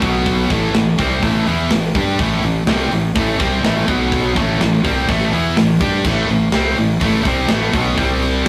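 Heavy metal in A minor at 124 BPM features a distorted electric guitar and a scooped, high-gain guitar driving an epic, relentless riff over a growly, fuzz-laden fingered bass and a tight, up-front drum kit with bright cymbals, all starting together and moving between B5 and Am chords before landing on C5 at 8.0 seconds in this rough, saturated rehearsal-room cut with light reverb.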